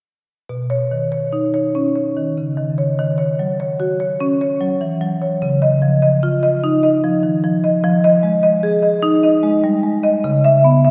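Heard from further back in a wet concert hall with a 1.9-second reverb, this short excerpt of a playful, flowing contemporary classical piece for solo marimba moves at a rubato 74 BPM in 3/4 and B major, the woody, dark rosewood bars struck with medium hard mallets across a range from B2 to E5 as the harmony drifts through Badd9, D#m7, C#add9, Fm7 and C#m7 between 0.5 and 10.9 seconds.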